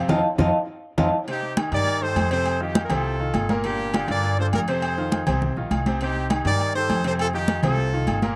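This salsa excerpt has a dry, open-air sound with little reverb, a sunny, danceable cut from a longer piece moving briskly at 203 BPM in a straight 4/4. It opens with a short vibraphone solo, metallic and up front, its medium hard mallets ringing over a medium motor vibrato until 1.1 seconds, while a drum fill and a band accent push the groove forward. At 1.3 seconds a punchy, tight horn section takes over the melody with a brilliant pop-style edge and a slapback echo. Underneath, a bright grand piano with audible action noise supplies the accompaniment, and a woody pizzicato upright bass holds the low end. Close, damped congas played with hard hands sit in front of distant metal-shell timbales and agogo bells carrying their own slapback echo. The harmony cycles between F7 and Cm7, with a brief turn to Gm7.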